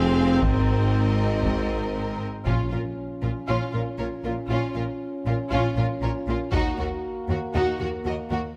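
Heroic and relentless, this cinematic orchestral film-score excerpt in Bb minor at 118 BPM sets lush, vibrato-laden violins carrying a focused melody and an expressive second line over smooth violas, mellow, distant French horns holding sustained chords, intense cellos and even double basses on the bass, and a vintage-toned tuba that drops out at 2.3 seconds, while a heavy-stick taiko ensemble enters at 0.4 seconds and calf-headed timpani join at 2.5 seconds, in a close, detailed recording with light reverb.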